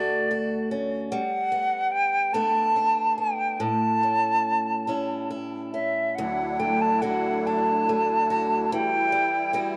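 An airy wooden flute carries the melody in this Celtic slow air, its bright, tongued voice sitting up front yet with a distant quality, shaped by expressive vibrato and a trail of tape echo. The feel is nostalgic and pastoral, moving in a loose, rubato 6/8. Beneath it, an old ladder-braced acoustic guitar supplies picked accompaniment with a boxy tone, also close in the mix. At 6.2 s, as the second section begins, a reedy musette accordion enters with soft sustained chords, its musette tuning giving a shimmering edge. The harmony drifts through colored chords such as Dmaj7, Gadd9 and Emadd9, all set in a moderate spring reverb, and the fragment is cut from a longer piece.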